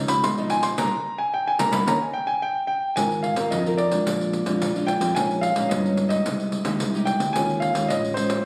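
Lively yet bittersweet, this short cut from a longer samba and choro piece moves at 110 BPM in Ab major, with an intimate, up-front concert grand piano carrying the high melody and taking a solo over the first 3.0 seconds while the band hits accents from 0.8 seconds. A small, fingerpicked nylon-string guitar supplies the accompaniment, a dark, round and punchy fretless electric bass holds down the low end, and a jingly, close and dry pandeiro played with hard hands drives the percussion. The piano sounds natural, with audible action noise and deep bass, and the whole performance is captured on a phone in the room with a light reverb.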